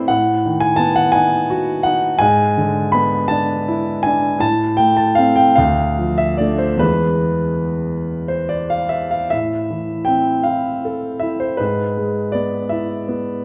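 Yearning and wistful, this brief passage from a romantic nocturne for solo piano unfolds in 12/8 with free, breathing rubato. A concert grand carries everything on its own from 0.0 to 13.4 seconds, ranging from D2 up to B5, its deep bass and smooth, vintage tone placed up front in an intimate way, with the noise of its action clearly audible. The harmony drifts through restless chords such as B7/A and E7/G# before settling onto Am around 4.4 seconds, then moves through Dm and E and back to Am near 9.3 seconds. It closes on an unresolved E/G#, leaving the phrase hanging as the fragment is cut from the longer work. A moderate recital hall reverb with a 1.7-second decay surrounds the instrument, giving it a sense of space while keeping the close, personal character.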